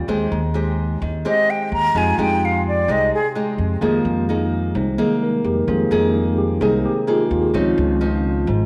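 A wet echo chamber reverb gives this brief bossa nova fragment, cut from a longer piece, a roomy, wistful and smooth sound. At 129 BPM in straight 4/4 and F minor, tuned to A4 = 445 Hz, a small, fingerpicked nylon-string guitar and a woody, thumpy upright bass played pizzicato sit up front through the whole passage. A clean tine electric piano with medium tremolo, heard through a combo amp, accompanies throughout and takes the spotlight from 3.8 seconds. The airy silver concert flute carries the melody between 1.3 and 3.3 seconds, its soft attack and expressive vibrato trailed by a slapback echo. The harmony moves from Abmaj7/Eb to Fm11 and settles on Dbmaj9 near the close.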